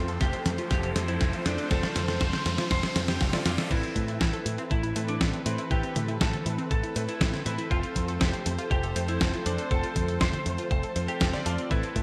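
Italo disco at 120 BPM, nostalgic and melodramatic, cut from a longer piece: a slightly broken-up, picked lead guitar carries the melody through chorus, delay and shimmer reverb, over dark, bowed chamber strings holding sustained chords, a detuned analog pluck spinning arpeggios, and clangy electric grand piano stabs in the background. A punchy, envelope-filtered picked bass and a gritty sampler-style kit with a fat, up-front snare and gated reverb drive the groove alongside a thumpy electronic kick, while a drum fill and a background riser run through the opening 3.7 seconds before the chords move from F to Amadd9 and back to F at 7.7 seconds. The sound is bright 1980s-style digital production with a moderate plate reverb.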